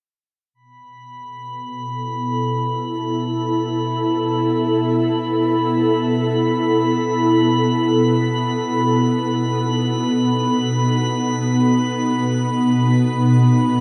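Ambient in free time and B mixolydian, this luminous, serene excerpt opens on a drifting glass-harmonics texture at 0.8 seconds, its bright, glassy overtones held high on B5 with chorus and shimmer reverb, before an ethereal, airy pad of detuned unison voices enters at 1.8 seconds, sitting up front with mellow sustained B7sus4 chords under ensemble chorus and shimmer reverb, all set in a huge, wet reverb with a 7.4-second decay and a cassette tape grain.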